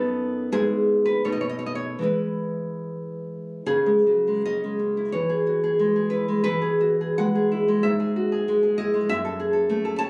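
In a flexible, rubato two-beat metre, this short excerpt from a longer romantic piece for solo classical guitar carries a nostalgic, warm mood. The fingerpicked nylon-string guitar sounds full-bodied and up front, moving into a new section at 3.7 s that shifts toward a darker minor colour before the clip ends at 10.1 s. Captured on a phone in the room, the sound has a moderate club-like reverb and noticeable compression.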